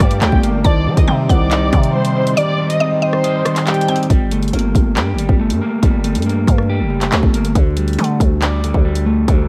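Drill hip hop in G minor at 139 BPM with a half-time feel, this dark, tense excerpt opens with a lush, vibrato-laden bowed violin section carrying the low-passed, delayed melody, a woody, detuned FM synth pluck with chorus and delay on a second line, and reedy, breathing harmonium chords, all ending by 4.1 seconds, while a slightly broken-up, fingered electric guitar, a growling, buzzy 808 bass and an up-front electronic drum kit with a hard-clipped kick, handclaps, hi-hats and rim clicks continue throughout, the kick dropping out from 2.4 to 4.1 seconds, all under a layer of vinyl crackle.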